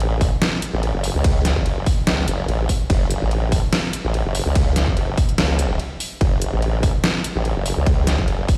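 A formant-filtered wobble bass sits up front, its sawtooth and sine layers compressed, chorused and driven with overdrive, sustaining between F#1 and C#2 from the very start. This is heavy, chaotic wobble dubstep in F# minor at 145 BPM, felt in half-time with a 55% swing on the 16ths and tuned to A4 = 445 Hz. A layered electronic drum kit, also up front, carries hi-hat, ride cymbal and a deep snare, all overdriven and re-recorded in a small room. A punchy, overdriven electronic kick joins at 0.2 seconds. A brief break arrives at 5.8 seconds before the groove resumes, and the whole passage is cut from a longer piece. The mix carries light reverb and the sound of a big sound system played in a bare room, wrapped in a large studio reverb.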